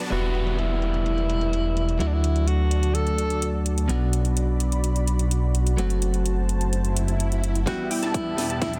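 A lush, chorused pad with a gritty sampler edge opens this anthemic, euphoric festival progressive house excerpt in E minor at 127 BPM, soon joined at 0.1 s by a breathy, intimate alto saxophone melody, bright clean electric guitar, an up-front detuned saw bass, metallic hats with a cracking overdriven snare, and electronic risers and downlifters over an Em, D, Bm, F#dim progression, before a build-up from 7.7 s brings a punchy overdriven kick, a drum fill, a plucky echoing lead and huge filtered supersaw chords, all glued together by a dense, heavily limited master.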